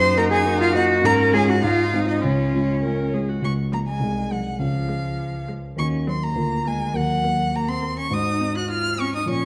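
Restless and dramatic, this quick classical-period piano quartet movement in Db major at 102 BPM in 2/4 sets a smooth, vibrato-rich solo violin melody over a smooth, even cello second line, a focused viola accompaniment, and a deep-bassed, up-front concert grand piano, with chords moving from Ebm/Gb through Db and Ab toward a closing Ab7, all in a dark production with moderate scoring-stage reverb in a brief cut from a longer piece.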